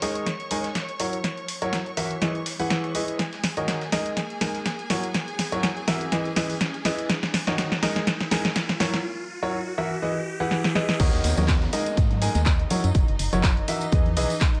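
A clear, vintage grand piano riff opens this bittersweet, soulful piano house excerpt up front, carrying delay and sidechain pumping over a smooth studio violin section with vibrato in the background. Alongside them, a punchy analog drum machine with claps, hats, snare and crash sits next to a very quiet, gritty sampler-style kit, while riser and downlifter effects and a series of drum fills build toward the drop. At 11.0 seconds the drop lands with a layered, up-front electronic kick, a hollow, dark organ-like FM bass with tube saturation, and soft-handed tambourine and congas tucked behind, all cycling through suspended, seventh and minor-seventh chords under light reverb.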